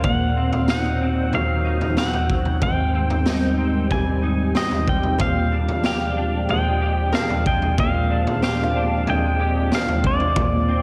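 A straight 4/4 pulse at 93 BPM comes from a raw garage drum kit, gritty and punchy with a high-tuned snare, sitting up front beneath a dreamy, floating dream pop passage in Bb mixolydian, cut from a longer piece and moving through Ebm6/Bb, Abmaj7 and Bb13. A clean electric guitar picks bright, chorused arpeggios with delay and slapback echo over a silky string machine's mellow sustained chords, colored by phaser and ensemble chorus, while a pedal steel guitar carries the melody in volume swells and slide, echoed through delay. From 5.2 to 9.2 s a plunky, twangy open-back banjo adds fingerpicked texture in the background, all bathed in a lush hall reverb for a big arena sound.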